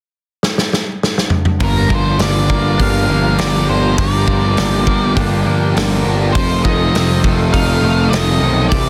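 Shoegaze and dream pop rock in G minor, this dreamy, brooding cut moves at 101 BPM in a straight 4/4. A loose, roomy drum kit with a punchy kick and medium-tuned snare opens with a fill from 0.4 seconds, sitting distant yet up front in a small room. At 1.6 seconds the full band arrives on Gm7: a fuzzed, overdriven picked bass anchors the low end, while a thick, dark fuzz guitar riff with lush chorus and a twangy, clean guitar riff bathed in reverse reverb blend into the background. Above them, a distorted octave-fuzz lead guitar carries the melody through tape echo, and a very quiet, slightly broken-up guitar through a small old amp picks compressed arpeggios. A vintage string machine voicing violas holds mellow, soft-attack sawtooth chords with ensemble chorus and a moving notch, carrying on as the harmony shifts to F7 at 6.3 seconds, all pressed into a dense, heavily limited modern master.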